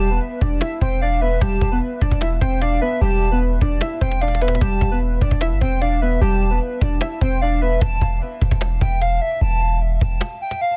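The sound is dense and heavily limited in a modern way, with a studio reverb around the parts. This menacing, hard-hitting trap cut from a longer piece moves with a half-time feel. Warbly, nostalgic lo-fi synth keys carry the melody up front, with a mellow chorus, low-pass filter and tape echo. A hollow, clarinet-like synth lead with soft vibrato adds a second line above them. A deep, boomy 808-style bass with a dark noise layer sits up front, while a close, dry cajon played with hard hands gives woody hits and a fill at 4.2 seconds. The keys drop out at 7.8 seconds as the harmony shifts from Em7 to Esus4, and the bass stops at 10.2 seconds for a brief break while the lead and cajon carry on.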